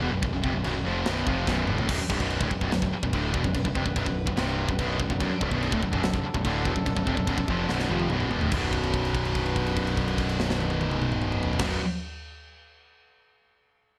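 Heavy metal with a dark, aggressive edge, this excerpt opens with a pair of bright, distorted high-gain guitars and a faint, double-tracked crunchy guitar churning out a riff over a growling, overdriven picked bass, while an up-front metal drum kit with a high-tuned snare, tight kick and gritty, saturated tone drives the straight four-four pulse. After a drum fill, a very quiet warm brass ensemble enters at 1.9 seconds with sustained classical-style chords, and another fill leads into a held note from 8.5 seconds. The sound is a bright 1980s-style digital production set in a light, small room reverb.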